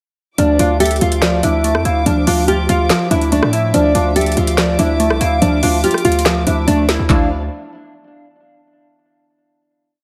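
Lightly reverberant and digitally ambient, this short, menacing and melancholic trap piece in D minor moves at 143 BPM with a half-time feel: a warm, fingerpicked nylon-string guitar loops its melody over a crystalline wavetable pluck arpeggio with chorus, while a hollow clarinet-like synth lead adds a sparse counter-melody through chorus and tape echo and soft bowed strings float in the background. Beneath them, a saturated, distorted 808 bass slides, and a trap kit with knocking kick, woody snare layered with clap, metallic hats and fast hi-hat rolls drives the hook until a drum fill at 6.7 seconds leads into a final chord from 7.1 seconds.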